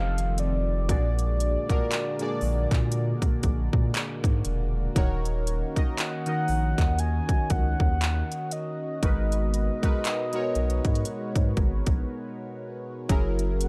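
Longing and moody, this swung contemporary R&B passage sets a horn-like, vibrato-laced synth lead over round, detuned analog keys coloured by chorus and phaser, while a shimmering, retro pulse-width pad with sidechain pumping sits in the background. A thick, saturated sub bass and an up-front trap kit of hard-clipped kick, crisp hi-hats and handclaps anchor the dark, warm production, which drops into a brief break at 12.1 seconds.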